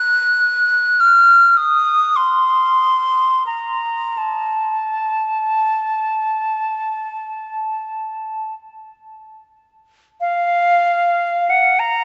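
A lone silver concert flute sings in its upper register, its airy, straight tone and crisp attack carrying a meditative, lonely mood through this free-time classical excerpt tuned to A4 = 438 Hz. The flute sits up front in a wet cathedral reverb with a 4.7-second decay, its top end cut off above 8 kHz. A new passage begins at 10.2 seconds before the clip ends at 12.0 seconds.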